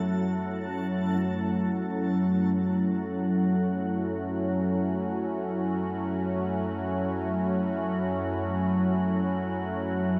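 This dark ambient drone in free time, cut from a longer piece, carries a vast and ominous mood centred on F#m. An organ-like drone of detuned sine tones sits up front between F#2 and F#3. It is calm and sustained with a slow attack, ensemble chorus and its own reverb, and a filter sweep shapes it over the opening 1.2 seconds. Above it, a sweeping resonant pad of detuned sawtooth layers with a noise layer holds chords from F#3 to E4, airy and bright, evolving through its filter swell under chorus. For just the first 1.2 seconds, a reversed, dreamy triangle texture swells faintly on A4, granular and detuned, before giving way as the drone and pad carry on alone to 10.2 seconds. A wet cathedral reverb surrounds the recording, placing it in a vast, echoing space.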